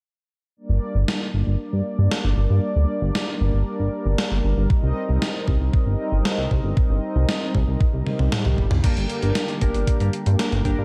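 A straight four-four synthwave groove with a moody, nocturnal air: a gated 80s digital drum machine with gated reverb on its snare, hi-hat, toms and crash comes in at 1.1 seconds, and a thumpy, tape-toned electronic kick joins it up front at 4.7 seconds. Already underway from 0.6 seconds, a glossy chorused synth bass with a filter sweep pumps alongside a brassy, bold analog pad holding sustained chords with chorus and tremolo, moving from Gm to Cm7. A drum fill and a background swell lead at 8.8 seconds into a new section, where a full-bodied chorused polysynth plays stabs with vintage 12-bit sampler grit over the returning Gm, in a dry sound that is cut from a longer piece.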